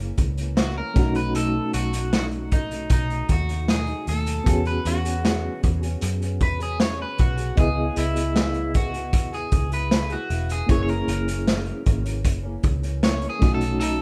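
Lonely and wistful, this short cut from a longer indie and bedroom pop piece moves in a straight, unhurried 4/4 over a progression of F#7, B7, E6 and C#m7. Picked electric guitar at the edge of break-up carries the solo melody from 0.6 s, its twangy tone dressed in subtle chorus and analog delay. Underneath, a reedy electric piano plays through its built-in speakers with fast tremolo and a cassette tape tint, while a small, thumb-plucked nylon-string guitar sits in the background, its finger squeak audible under subtle chorus and a warbly pitch drift. A vintage muted picked bass gives a dark, round, punchy low end, and the raw garage drum kit enters at 0.2 s with hi-hat, a boomy kick and a medium-tuned snare, gritty and saturated, placed up front in a small, pumping room with a rolled-off top. Light reverb and cassette tape give the whole a rough home demo feel.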